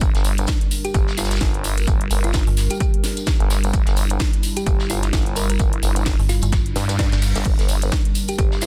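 Swung sixteenths drive this bouncy, aggressive bass house excerpt, where a punchy overdriven electronic kick and a house kit with cracking snare and metallic hats sit over a nasal, formant-swept wobble bass with sidechain pumping, a brooding detuned analog pad, and a round, tine-like synth pluck with tape echo arriving at 0.8 s; a brushed vintage kit and a jingly tambourine stay in the background, a digital FM bass jabs in up front at 2.5 s, and a reverse cymbal appears at 6.7 s in a dry, dense, heavily limited mix.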